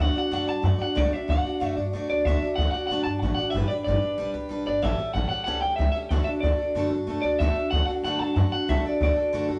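A band playing live in one room fills a large studio with moderate reverb, and the top end is softly rolled off. This rollicking, retro rockabilly excerpt moves at a straight 187 BPM in D major, cycling through D, G and A7 back to D. A twangy, slightly broken-up electric guitar through a small old amp picks the bright melody up front, over a warm parlour steel-string acoustic picking fresh-stringed accompaniment and a thumpy, woody pizzicato upright bass with gut strings.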